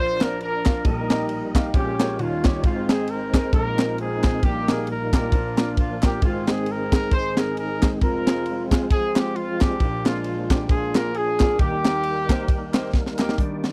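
A swung 4/4 groove from a tight, up-front funk drum kit with a high-tuned snare and hollow background handclaps drives this hopeful, soulful uptempo gospel clip, where a smooth-topped horn section carries the melody over clear, boxy grand piano and a fat, lightly overdriven tonewheel organ with key click, chorus vibrato and slow rotary speaker, all in a dry, close 1970s-style studio sound that closes on a drum fill at 12.9 seconds.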